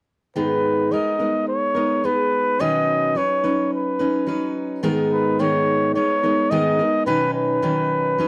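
The sound is dry and close, in the manner of a 1970s studio recording, with a light touch of reverb. This gentle, pastoral folk piece, cut from a longer work, moves at 107 BPM in a straight 4/4 and is tuned to A4 = 444 Hz. A picked steel-string jumbo acoustic guitar sits up front with a full-bodied, warm tone, laying down the accompaniment from G#2 up to B4. Over it, a warm flugelhorn carries the solo melody in a classical style, also up front, moving between B4 and D#5. Both parts play together from 0.4 to 8.3 seconds, with a second section beginning at 4.8 seconds. The harmony alternates between G#madd9 and Badd9, giving the brief passage a soft, open glow.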